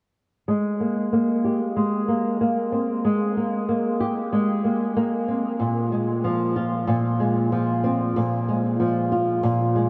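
The recording is dreamy and soaked in a huge ambient reverb with a very long tail, so every note hangs in the air. This short folktronica excerpt has a pastoral, hopeful mood at 94 BPM in a straight 4/4, set in Ab major. A dark, thumb-plucked acoustic flamenco guitar sits up front, playing arpeggios that range from Bb2 to G4. Its tone is shaped by a lush chorus, a low-pass filter that softens its edges, and a delay that adds trailing echoes. The harmony rests on Abmaj9 from 0.5 seconds before moving to Bbsus2 at 5.6 seconds, and the passage stops at 9.9 seconds as if it continues beyond the cut.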